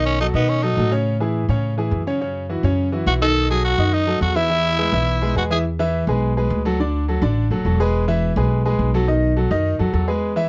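A straight 4/4 pulse at 210 BPM drives this festive, joyful Latin excerpt in E major, with a woody, pizzicato upright bass and a clear concert grand piano with deep lows playing throughout its 10.5 seconds. A raspy, gritty tenor saxophone carries the melody with vibrato, sounding from 0.0 to 0.9 seconds and again from 3.1 to 5.6 seconds. Close, detailed microphones and light reverb keep all three instruments up front.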